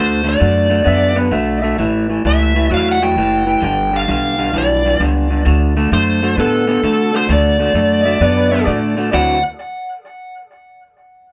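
A band playing live in one room, with a moderate studio reverb giving the sound a close, natural space. This laid-back, gritty electric blues shuffle in D mixolydian swings along at 131 BPM in 4/4, cut from a longer piece. An electric guitar through a small old amp carries the riff up front, fingered with a slightly broken-up, lo-fi, compressed tone, while a plucked upright bass on gut strings adds a thumpy, woody bottom. Over them, a dark, smooth lead guitar plays the melody up front, picked and overdriven and trailed by an analog delay. A polished upright piano adds a present second line in two short spots, first at 0.8 seconds and again from 8.0 seconds, as the chords move through D6, A6 and G6 before landing on D9 at 9.1 seconds.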